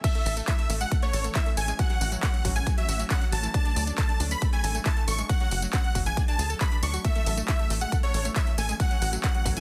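A straight 4/4 pulse at 137 BPM drives this uplifting, soaring trance drop in A major, cut from a longer piece, with a punchy up-front electronic kick, a big-room kit of crash, handclaps, metallic hi-hats and tambourine, and a tight, nasal sequencer bass entering at 0.3 s, while a huge, detuned supersaw carries the melody with sidechain pumping and digital delay, joined by a very quiet, catchy unison lead playing a second line, over round, warbling vintage analog-pluck arpeggios and a shimmering, ethereal pad holding sustained chords in the background, all in a dense, heavily limited modern master with little reverb.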